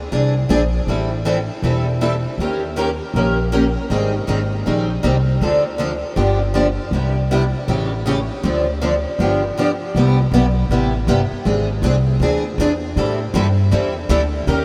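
A picked parlour steel-string acoustic guitar sits up front with a lush chorus, picking jazzy seventh-chord changes over a woody, growly pizzicato upright bass in this swinging, playful slice of acoustic gypsy-jazz string swing, all soaked in a huge, dreamy ambient reverb.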